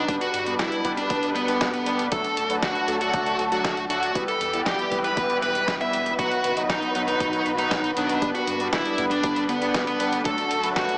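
An up-front electric lead guitar, dark and smooth with overdrive, carries the melody through this nostalgic, melodramatic italo disco fragment, backed by bowed studio strings holding clear, vibrato-tinged chords and bold, brassy analog synth stabs coloured by chorus and a filter sweep. Underneath, a round, deep analog bass sits in the background while a dusty sampler-style kit supplies gritty hi-hat and a fat snare alongside a dry, punchy, overdriven electronic kick. A moderate plate reverb and a small-speaker sound frame a chord cycle moving from G through D, Em and B before returning to G and D.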